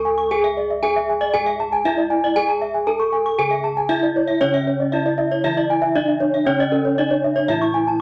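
Gamelan at 117 BPM in C# pelog, hypnotic and brilliant, this short cut from a longer piece sets an up-front bronze metallophone melody, struck with a horn mallet and shimmering from its paired tuning, over round, dark bossed gongs in the bass. Two more metallophones weave arpeggios above, one smooth and shadowy, the other bright and beating, while a fourth, dry and full under a wooden mallet, adds low accompaniment from 4.4 seconds. A wet studio reverb surrounds the ringing bronze, and the melody carries a warm, boxy small-room tone.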